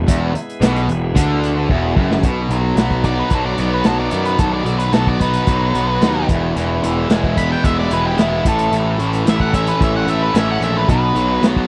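An octave-fuzz lead guitar with a dark, distorted tone takes a solo from 3.1 seconds over a swaggering, driving classic rock groove at 111 BPM, propelled by a growly fuzz bass, a muffled, punchy vintage drum kit with a fill at 1.7 seconds, two brilliant overdriven guitars playing riffs (one up front, one crunchier in the background) and a very quiet tonewheel organ with key click and slow rotary speaker holding chords until 2.2 seconds, all captured in a dry, close 1970s-style small-room sound that moves from E through B and A in this excerpt.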